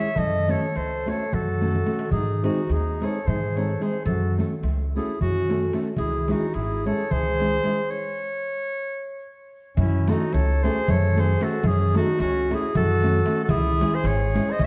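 A dark, reverberant recital-hall sound frames this bittersweet, restless Balkan wedding-band tune in 7/8, set at 221 BPM in eighths and speeding up throughout in F# dorian sharp4. An up-front vintage clarinet with tape echo carries the melody over a classical-style trumpet second line with light vibrato, while a fingerpicked flamenco guitar accompanies and a growly, woody pizzicato upright bass sits forward from 0.2 s. A distant clay-shell darbuka struck with hard hands adds a fill at 1.6 s, the music stops at 7.9 s, and a new section begins at 9.8 s.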